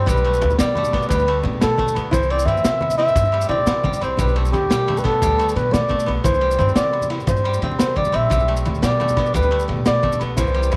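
Light reverb and a small-room ambience frame this sunny, danceable highlife guitar-band passage, cut from a longer piece and moving at 116 BPM in a straight 12/8. Up front, a trumpet with a bucket mute carries the melody in a veiled jazz style, with vibrato, scooped notes and a touch of slapback echo. A dry, woody koto played with fingerpicks spins arpeggios beneath it, also with slapback echo, while a thumpy pizzicato upright bass on steel strings anchors the low end. A saturated, gritty breakbeat kit with a tight kick, medium-tuned snare and dark ride cymbal drives the groove, adding a drum fill between 5.4 and 6.3 seconds. Bright, low-tuned congas sit in the background beside ringing agogo bells and grainy maracas. A very quiet, full-bodied nylon-string guitar adds fingerpicked accompaniment with audible finger squeak, as the harmony alternates between Gadd9/B and C.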